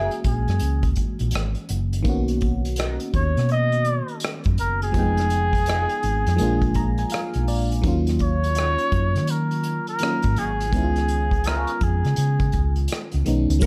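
A cup-muted trumpet leads this smooth, soulful neo-soul excerpt with a veiled, vintage jazz-style tone, vibrato and scooped notes, sitting up front over a swung sixteenth-note feel. A glassy, bell-like FM electric piano with chorus accompanies and plays a fill from 6.4 to 7.8 seconds, while a slightly broken-up picked electric guitar with wah and phaser sits in the background until 11.7 seconds. A round hollow-body bass and an unplugged kit played with bundle sticks (hi-hat, punchy kick and rim click) anchor the dark, lightly reverberant mix, and a clean tonewheel organ on slow rotary speaker and an egg shaker appear only at 13.6 seconds.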